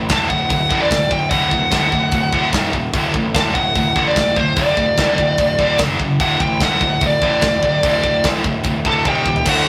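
A rough rehearsal-room recording with light reverb captures this dark, heavy metal excerpt at 147 BPM in D major, where two bright, high-gain distorted rhythm guitars pick a riff in the background over a growly, fuzz-laden picked bass and a tight acoustic kit with bright cymbals and a tight kick. Up front, a dark-toned distorted lead guitar carries the melody high above the riff as the chords move between D, Eb5, D5 and F#5. Near the end, a second, warmer lead line enters at 8.9 seconds, the drums break into a fill at 9.1 seconds, and a raw, double-tracked overdriven garage guitar cuts in at 9.5 seconds.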